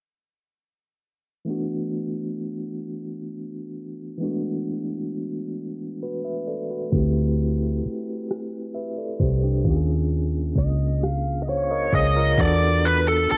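This short cut from a longer piece has the dry, muffled sound of a home cassette recording, close and intimate with little reverb, and a filter sweep runs through most of its length. It is a slow, sultry, late-night R&B groove in six-eight, built on lush suspended ninth chords. A barky tine electric piano opens alone at 1.4 seconds, bright and lightly overdriven through a combo amp, with a fast tremolo and a tape-worn grain. At 6.9 seconds a dark, round, foam-muted fingered electric bass arrives up front, alongside a smooth electronic R&B drum kit of soft kick, silky hi-hat and rim click. From 10.6 seconds a bluesy lead guitar, picked and distorted, cuts in high with a gritty edge before the clip ends.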